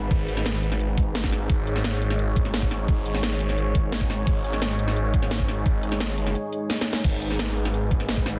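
The sound is dense and heavily limited, set in a digital ambience, with this 8.4-second excerpt cut from a longer piece of dark technical drum and bass in G# minor at 173 BPM in straight 4/4. The mood is aggressive and dark, resting on a single G# minor chord throughout. Up front, a thick, swirling detuned saw bass holds G#1, its saturated sawtooth, square and sine layers treated with phaser, overdrive and sidechain pumping. Alongside it, a deep, moody analog pad sustains chords between G#3 and C#5 with a slow attack, sub-octave weight, chorus and its own pumping. The layered electronic drums sit forward with a tape-tinged, small-room character: a knocking kick, a cracking soft-clipped snare, metallic hi-hats and crash cymbal, with a drum fill at 6.7 seconds.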